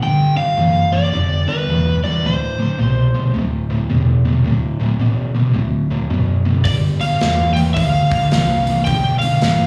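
Captured live through a club PA with small-room ambience, this swaggering, driving blues rock and southern rock fragment swings hard over G7 and D7 changes. A dark, double-tracked fuzz guitar riff sits up front the whole way with a round, hollow-body picked bass beneath it, while an overdriven slide guitar, played with fingerpicks and touched with slapback echo, carries the melody from the start and returns at 6.7 seconds. At that moment a big rock kit joins with a punchy kick, medium-tuned snare and hi-hat.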